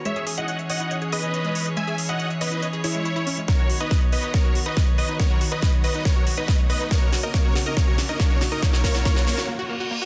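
Uplifting trance at 140 BPM in B major, this soaring excerpt from a longer piece is a build-up that moves through C#m, Badd9 and F#. A rich chamber string section with light vibrato and an earthy, smooth top holds sustained chords, while a huge, thick supersaw carries the melody through a low-pass filter and dub echo. A lush, detuned unison pluck spins arpeggios through delay, and the strings, supersaw and pluck all pump against the sidechain. The big-room drum kit brings a huge snare and crisp, high-passed hats, and a punchy, tape-warm electronic kick sits up front from 3.5 s, as a drum fill runs to 9.5 s. A very quiet riser and reverse cymbal enter at 6.3 s and lead into a brief break, all within a dense, heavily limited master with light reverb.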